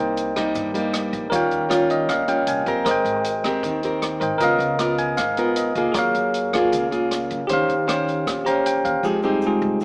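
Smooth, intimate bossa nova at 156 BPM in this brief excerpt, with a bright, bell-like, barky tine electric piano up front that slips in fills around 1.7, 4.8 and 8.3 seconds beside a dark, full-bodied fingerpicked nylon-string guitar, while a woody, growly pizzicato upright bass sits in the background, an open jazz drum kit with boomy kick, hi-hat and rim click adds natural small-room pulse, and a grainy tube shaker whispers very quietly, all under light reverb with a small-speaker sound as the chords move from Cm7 through Abmaj9 and Gbmaj9 to Fm7.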